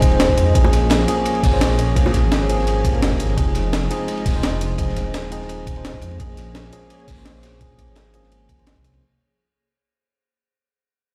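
Heard through a big sound system in a bare stone room, this short cut from a longer liquid drum and bass piece has a light, small-room ambience and fades out across its full 9 seconds. At 170 BPM in 4/4 with a gentle swing on the sixteenths, the mood is rolling and dreamy, moving between Fm7 and Bbm7. Up front, a clean tine electric piano plays the accompaniment through a combo amp, softened by a low-pass filter and trailed by digital delay. Behind it, an airy, breathy pad with a nasal, detuned edge holds slow-blooming sustained chords, treated with chorus and sidechain pumping. Underneath, a deep, rumbling detuned saw bass beats against itself. The drums layer a thumpy, pitched-up electronic kick and a gritty sampler-style breakbeat kit with hi-hat and snare, both in studio reverb, over a quieter, darker, saturated acoustic break with ride and a rolled-off top. Round, low-tuned bongos sit close and dry in the background from 0.6 to 2.1 seconds, just after a barely audible electronic downlifter opens the clip.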